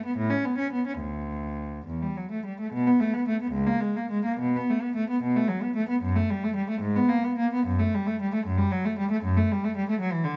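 A single bowed cello with a rich, gut-string tone and a reedy edge carries this short classical fragment, a baroque-style suite movement for the unaccompanied instrument, played in period style. The mood is flowing and dance-like, set in 6/8 at roughly 68-78 BPM counted in dotted quarters, with a rubato feel that lets the pulse breathe. The cello spans C#2 to C#4 and plays alone throughout, from 0.0 to 10.4 seconds, tuned to A4 = 438 Hz. After a brief opening statement, the same material returns at 2.7 seconds and carries on to the close of this clip, which is cut from a longer piece. Close, detailed microphones keep the player up front, while a moderate recital hall reverb with a 1.3-second decay gives the sound a natural sense of space.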